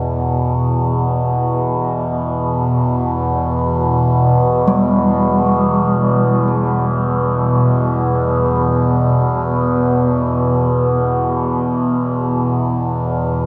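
Dark ambient drone in free time and E minor, ominous and cavernous, where an up-front drone of moving, resonant overtones blends sawtooth and sine tones with slow attack and long release through chorus, phaser and its own reverb, while from 4.7 to 11.9 seconds a ringing bronze gamelan-type metallophone, struck with a wooden mallet and shimmering with paired-tuning beats, plays arpeggios in the background through tape echo and shimmer reverb, all within a wet cathedral space with a 6.7-second decay in this cut from a longer piece.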